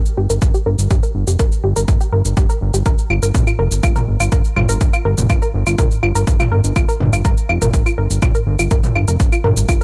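Dramatic and hypnotic, this short cut from a longer melodic techno track runs at 123 BPM in a straight 4/4, with a nasal, detuned analog pluck spinning arpeggios between F4 and Bb4 through chorus, tape echo, sidechain pumping and a filter sweep over an Fsus24 chord. Underneath, a fat, saturated, wave-folded analog bass holds between F1 and G1 with its own sidechain pumping, while electronic shaker, claves and toms come in at 0.1 seconds and a punchy, up-front electronic kick lands at 0.4 seconds. The sound is dry and close, with little reverb.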